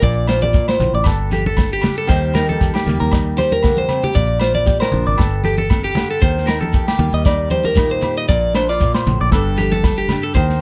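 A lightly swung 16th-note groove at 116 BPM in 4/4 drives this joyful, danceable highlife guitar band fragment, where a slightly broken-up, compressed electric guitar sits up front with picked arpeggios through phaser and slapback echo over a boxy, fingerpicked nylon-string guitar with audible finger squeak, a dark, round, foam-muted fingered bass and a roomy, distant soul drum kit with tight kick and medium-tuned snare that plays a short fill at 3.8 seconds, while grainy shekere sounds alongside ringing agogo bells and hard-handed congas tucked in the background as the chords cycle through Bbadd9, Gsus2 and Eb under a light reverb.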